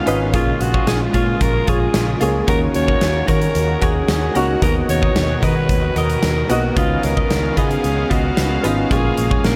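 1980s-style pop in Eb minor at 112 BPM, this dramatic, urgent excerpt sets a raspy, gritty alto saxophone with light vibrato on the melody over a big rock drum kit with a punchy kick up front and a dark, round fingered electric bass. Behind them sit a concert grand piano with deep bass and short sustain, a swirling, detuned sawtooth pad with phaser and chorus holding sustained chords, and a bright, direct-recorded clean electric guitar riff with lush chorus, moving through Bbm7, Ebm7, Bmaj7/D# and Db9. A huge ambient reverb soaks the whole mix in a dreamy haze.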